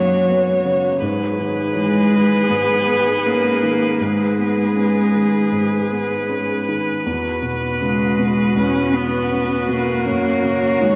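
Neoclassical piano and strings in G# minor, this melancholic, reflective excerpt moves at 80 BPM in 4/4 with a rubato feel, tuned slightly low to A4 = 439 Hz. A solo bowed violin carries the melody up front, its tone rich, smooth and even with vibrato, while a single cello sings a second line beneath it with a focused sound and a silky top. One viola fills in the accompaniment close by, expressive and lush with vibrato, soft attacks and portamento. A felt-muted upright piano sits lower in the mix, mellow and intimate, with thin felt and audible action noise. The harmony opens on F# and moves to G# minor at 1.0 second, where it rests before shifting to Eadd9 around 7.1 seconds and settling on F# at 10.1 seconds. A wet cathedral reverb places the ensemble in a vast, echoing space, and the passage is cut from a longer piece.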